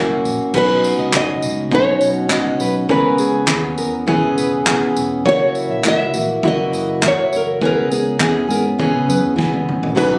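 A full-bodied, fingerpicked steel-string acoustic guitar sits up front with audible finger squeak, carrying the accompaniment while a small, bright nylon-string guitar plays the melody and a second jumbo steel-string guitar, plugged in and set in the background, adds arpeggios from 0.6 seconds. Underneath, a round, foam-muted vintage electric bass gives an amped, punchy low end, and from 0.3 seconds a distant, roomy drum kit played with bundle sticks brings dark cymbals, kick, snare, toms, handclaps and tambourine, closing on a fill at 9.4 seconds. This sunny, carefree acoustic pop excerpt moves at 102 BPM in a straight 4/4 through F#7, Badd9 and C#m7, captured with a phone in the room for a club-like reverb.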